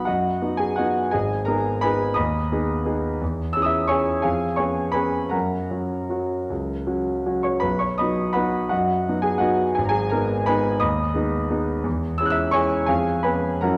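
A classical piano waltz in 3/4, this sparkling, graceful fragment of a longer piece moves at a rubato 149-181 BPM in B major, tuned to A4 = 437 Hz. A solo concert grand piano plays throughout, sounding clear and open with a deep bass, placed up front and ranging from G#1 to F#6 as the harmony circles from B through G#m, C#m/E and C#7/E# to F# and back. A wet concert hall reverb with a 2.0-second decay surrounds it in a dark, warm production.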